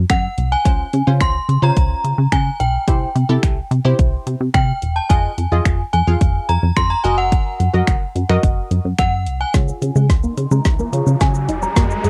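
A dry, cassette-recorded home production opens this euphoric, upbeat dance-pop excerpt, moving at 108 BPM in a straight 4/4 in Db major. A punchy, funky analog bass with a dark sawtooth and pulse-wave pluck sits up front with sidechain pumping, beside a deep house drum kit of deep kick, woody snare, dark hats, finger snaps and shaker. An inharmonic, ringing FM synth chime carries the melody through ensemble chorus and a low-pass filter. From 0.6 seconds, a wave-folded chord stab with a bright, plucked edge pumps through a progression of Dbmaj7, C, Fm7 and Gb6. At 9.5 seconds a build-up begins with a drum fill and a filter sweep as the harmony lands on Db. A twangy, clean twelve-string electric guitar riff joins in the background from 9.7 seconds, followed by an electronic riser from 10.3 seconds.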